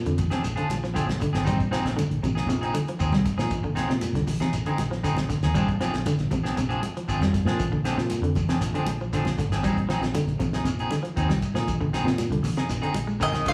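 A clean, bright electric guitar picks arpeggios over a round, punchy fingered bass from the start of this funky, hypnotic afrobeat excerpt at 118 BPM in Bb mixolydian, swaying between Bb9 and Fm7/Bb. A cloth-damped, thuddy drum kit with a fat snare and tight kick joins with a grainy shekere, high-tuned congas and a twangy guitar at the edge of break-up playing stabs, all blended by a moderate large-studio reverb as if the band were playing live in one room. At 13.2 seconds an up-front mandolin carries the melody while a raspy, gritty tenor saxophone adds a second line.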